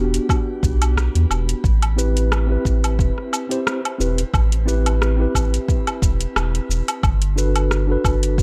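A round, nasal analog bass sits up front in this wistful sunset chillout excerpt, its sustained low tones giving the groove a dark, rounded foundation. The tempo is an easygoing 89 BPM in 4/4, with a gentle 16th-note swing that keeps the feel relaxed. A mellow, clean tine electric piano plays the accompaniment in the background, colored by tape echo and a shimmering reverb that lends it a dreamy glow. A deep house drum kit with metallic hi-hats, rim click, shaker and woodblock adds light detail, and an electronic kick drum with a deep, tape-warm thump joins at 0.3 seconds. The harmony moves from Em7 to Am7 at 1.6 seconds, then settles on Gmaj7 at 7.0 seconds. The production is dark and warm, with a light reverb around the whole mix.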